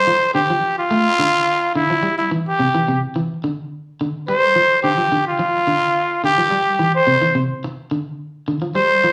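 Intense and funky, this afrobeat passage, cut from a longer piece, puts a raspy, growling trumpet up front with a light vibrato and smooth top as it sings a pop-style solo melody, while a twangy, slightly broken-up electric guitar, fingered and also up front, plays arpeggios beneath it over chords moving between Dm, Cadd9 and Dm7, all heard as a band playing live in one large studio room with a wet reverb.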